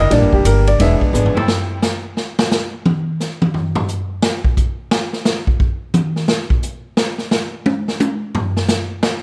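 A swinging big-band drum kit dominates this brassy jazz passage, taking a solo from 1.5 seconds through to 9.1 seconds. Its punchy kick, medium-tuned snare, hi-hat, ride cymbal and toms sound roomy and rolled-off at the top, yet sit up front. The music moves at 175 BPM in 4/4 with a swing feel. Before the solo, a brief opening has a warm baby grand piano, natural-toned with short sustain, leading over chords moving from Em7b5 to E7 and on to Am7, with a drum fill from 1.1 seconds. Underneath, a woody, dark pizzicato upright bass sits prominently, a mellow saxophone section holds tight, vintage-sounding sustained chords with vibrato and a soft attack, and a boxy, picked ladder-braced acoustic guitar adds very quiet accompaniment. Light reverb surrounds the studio room sound.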